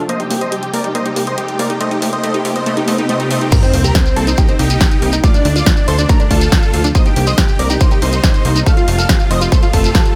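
A straight 4/4 pulse at 140 BPM drives this emotional, driving uplifting trance excerpt in C dorian: a huge, euphoric supersaw lead carries the melody over a shimmering, ethereal pad, a lush unison pluck arpeggio that gets a filter sweep through the build-up, a funky plucky analog bass, a punchy analog drum machine with crash, hi-hat and snare, and a very quiet riser and sub drop, until the drop at 3.5 seconds brings in an up-front, tape-warm electronic kick, a grainy shekere and a catchy square-wave second lead in the background, with sidechain pumping on the synths and on the drum machine's hats and cymbals.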